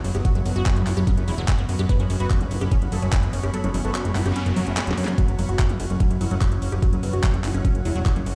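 A straight 4/4 pulse drives this intense, psychedelic trance excerpt. The knocking electronic kick sits up front, and a garage drum kit fills in with cracking snare, metallic hi-hats, ride cymbal and handclaps. A fat, saturated analog bass carries the low end with a nasal, detuned sawtooth tone. Above it, a squelchy liquid acid bass riff with a resonant filter sweep and phaser sits in the background, alongside a dark, thick unison lead melody with phaser and tape echo. A pulsing, tempo-synced gated texture holds sustained chords, a blurred granular cloud pad drifts higher up, and a very quiet formant-sweep wobble bass adds a second line, with the chord parts and the acid riff all pumping against the kick. The kick drops out at 3.5 seconds, a faint noise sweep enters soon after, and a drum fill from 4.8 seconds leads the kick back in at 5.2 seconds, all set in a large, roomy studio reverb.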